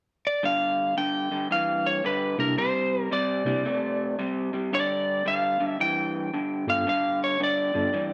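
A moderate echo-chamber reverb lends this short blues excerpt a roomy digital ambience and a gritty, swaggering swing feel. A lightly driven lead guitar, dark and picked with slapback echo, carries the melody from 0.3 seconds, while a lo-fi, slightly broken-up electric guitar through a small old amp plays a fingered riff low beneath it, treated with spring reverb. From 2.4 seconds a mellow, reedy electric piano adds clean accompaniment with fast tremolo through its built-in speakers, over chords moving from G5 to Csus2 to G7(no3).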